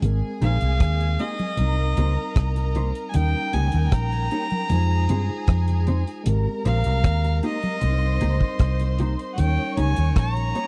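The beat sits at 77 BPM in straight 4/4, a romantic, smooth lovers rock reggae groove in Ab major, driven by a deep, dry drum kit with tight kick, hi-hat and rim click up front alongside a dark, round, punchy foam-muted fingered bass and very quiet, bright, damped congas. Over chords cycling through Abmaj9, Cm7, Eb7 and Fm7, a mellow tine electric piano plays through its built-in speakers, and from 0.4 seconds a clean, compressed electric guitar adds phaser-treated stabs. A reedy, gut-string solo fiddle carries the melody through tape echo, backed by a lush, bowed studio violin section with vibrato in a close, dry 1970s-style sound, cut from a longer piece.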